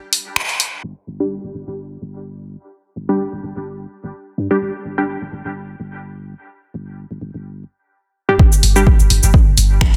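Clinical and cool, this minimal techno excerpt at 127 BPM with a light 16th-note swing opens on a brief break of overdriven analog drum-machine finger snaps, hi-hat and shaker. A deep, pitch-dropping sine sub bass with tube saturation and sidechain pumping then arrives at 0.8 seconds and is joined at 1.2 seconds by crisp, detuned wavetable chord stabs trailing dub echo, as a filter sweep builds toward the drop at 8.4 seconds. There, a punchy, overdriven electronic kick re-recorded in a large room lands up front alongside the returning drum machine in a dense, heavily limited mix.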